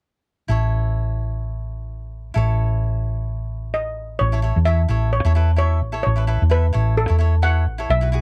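A crisp, picked cavaquinho and a round, punchy hollow-body electric bass sitting up front open this festive, sunny calypso excerpt with a light swing, before a bright, shimmering double-seconds steel pan played with hard rubber sticks enters with the melody at 3.7 seconds, all captured in a dry, close 1970s-style studio sound.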